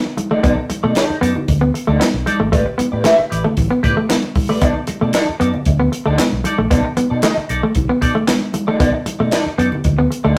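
A gritty, strutting funk groove at 115 BPM in a straight 4/4, cut from a longer piece and captured as a rough rehearsal-room recording with tube saturation and a wet studio reverb. A bright, twangy clean electric guitar sits up front with wah, playing picked accompaniment from D#4 to E5 over a B7#9 that moves to A9sus4 at 2.5 seconds and back to B7#9 at 4.6 seconds. Alongside it, a warm, compressed semi-hollow electric guitar with a fingered, hollow-body tone holds a riff in the low A3 to B3 range. A compact cocktail drum kit, dry and acoustic with a punchy kick and high-tuned snare, drives the beat with hi-hat and handclaps. Beneath it, a dark, round vintage bass, foam-muted and amped, covers G#1 to B2, while thin-skinned, saturated congas played with soft hands sit in the background.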